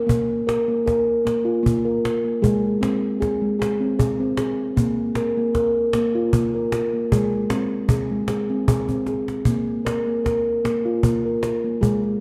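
A gently swung 3/4 lilt at 77 BPM carries this gentle, meditative world passage, cut from a longer piece, where a round, airy steel tongue drum played with firm rubber mallets rings out up-front arpeggios over chords alternating between Bb5 and Ab, while a woody cajon with faint snares keeps time and slips in a brief fill at 8.9 seconds, the two set inside a dark, wet concert-hall reverb.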